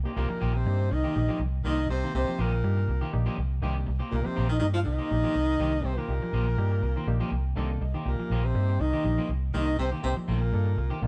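A straight 4/4 groove at 122 BPM drives this hypnotic afrobeat passage in C minor, cut from a longer piece and resting on a Cm7 chord. Up front, a vintage muted fingered electric bass sits round and dark with an amped, foam-muted tone. A trombone with a bucket mute carries the melody, veiled and whispered with a soft attack, breathy vibrato and an intimate pop style. A clear trumpet with a smooth top and a punchy, lightly vibrato baritone saxophone play second lines alongside it. An electric guitar at the edge of break-up adds scooped, picked stabs with a slightly broken-up tone, while a clean electric guitar plays fingered arpeggios in the background. A bright, reedy electric piano with medium tremolo sounds through built-in speakers in the background and plays a fill from 6.6 s, and the whole band comes across as playing live in one room with light reverb.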